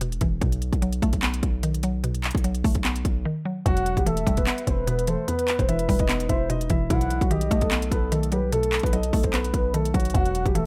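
Dark and menacing, this half-time trap cut opens with a woody, round FM synth pluck, a heavily distorted 808-style bass and an up-front electronic drum kit of hard-clipped kick, crisp hi-hats and handclaps; after a brief break at 3.3 seconds, a mellow baby grand piano takes the melody at 3.7 seconds alongside a smooth, detuned portamento lead with vibrato and delay, set in a digital ambience as the harmony moves between B7 and Em.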